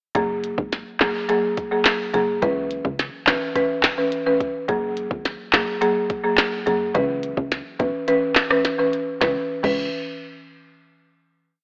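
A syncopated dancehall beat at 106 BPM in straight 4/4 sets the tone: an electronic, minimal click kit with a soft kick answered by a tiny snare layered with handclaps, clicky hi-hats, rim clicks and a crash cymbal, all sitting up front. The mood is tough and sultry, in C# dorian, with the whole short piece moving between F#add9 and C#m7 across a single verse. A buzzing marimba struck with medium mallets plays syncopated chords on hardwood bars, its tone woody, dry and airy and placed close to the listener. Beneath it, a plucky analog bass gives punchy, funky syncopated low notes, a wave-folded sawtooth-and-square blend with a fast attack and a mellow, decaying filter pluck. The kick falls silent from 8.1 to 9.2 seconds, and a final chord arrives at 9.2 seconds before the parts stop near 9.9 seconds. Light reverb and a worn cassette character with warbly pitch drift and an AM-radio thinness colour the recording.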